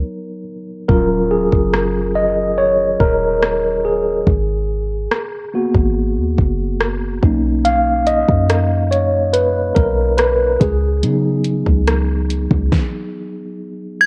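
A mellow, clean tine electric piano with a cassette-tape tint opens this sensual, late-night contemporary R&B fragment over a deep, boomy 808-style bass, moving through lush chords such as Ebm7, Abm9 and Bmaj9 before settling back on Db9sus4. At 0.9 seconds a smooth, electronic drum kit joins with a soft kick, fat snare, rim click and hi-hat, its overdriven, taped sound sitting up front until it drops out at 12.9 seconds. The electric piano then carries on alone, and a chiming, inharmonic FM synth note with ensemble chorus rings out at 14.0 seconds, all within a moderate spring reverb and the hazy feel of a home cassette recording.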